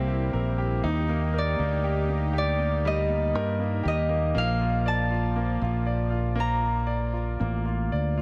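Hopeful and heartfelt, this short pop excerpt moves at a slow 60 BPM in Bb major, with a bright, fingerpicked Celtic harp carrying the ringing melody over a brilliant, polished concert grand piano accompaniment. A punchy, up-front fingered electric bass anchors the low end, while a shimmering, retro pulse-width pad with chorus holds soft sustained chords in the background. The harmony moves from C7 to Ebmaj7 and settles on Bbmaj7 at 4.4 seconds, all within light reverb.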